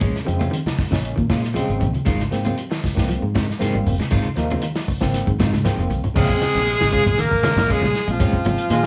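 A lo-fi, small-room afrobeat excerpt at 117 BPM in Bb minor moves hypnotically and funkily over Bbm7 and Ab6, with a muffled vintage kit, dry low-tuned congas, a round foam-muted fingered bass, two clean picked electric guitars on arpeggios and stabs, and a barky overdriven electric piano with fast tremolo, until a drum fill at 5.5 seconds brings in a smooth up-front alto saxophone lead with slapback echo over a raspy tenor saxophone at 6.2 seconds, and a brilliant, tight trombone section touches an Ab3 at 8.7 seconds.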